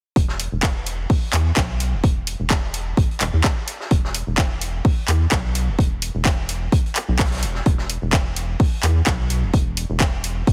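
Sparse and clinical, this minimal techno excerpt runs at 128 BPM in 4/4 with a light 16th-note swing, built on a punchy, overdriven electronic kick up front, a rubbery, hollow square-wave bass pumping under sidechain from E1 to E2, a bright-hatted house kit of handclaps and hi-hat with its own overdrive, and a very quiet acoustic kit of hi-hat and fat snare, all set in a small room with a heavily compressed, radio-like sound.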